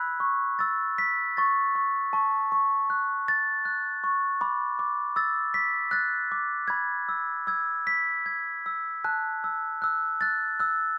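In a rubato 3/4 at 78 BPM, this tender, innocent children's lullaby is a short excerpt carried by a solo glockenspiel played with rubber mallets, sounding mellow and bell-like, up front in the mix, across the 11 seconds in a range from A5 to B6. The harmony drifts from Aadd9 through F#m/A, Bm7 and E before settling on F#m7 at 9.0 seconds, all in a light reverb that gives the soft, ringing tones a gentle halo.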